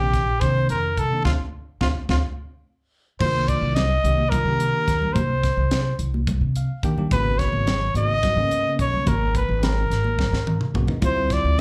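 Slick and driving, this electric jazz fusion excerpt moves at 215 BPM in a straight 7/8. A clear, close-miked trumpet with light vibrato leads up front over bell-like tine electric piano, both touched by slapback echo, while a woody, dark pizzicato upright bass and a tight funk drum kit with a high-tuned snare drive underneath. The band hits accents and a drum fill before settling into C minor at 3.2 s, when thick-skinned, high-tuned congas with slapback echo join in the background, and the electric piano adds a fill at 6.3 s, all heard as a live gig through the venue's PA with club reverb.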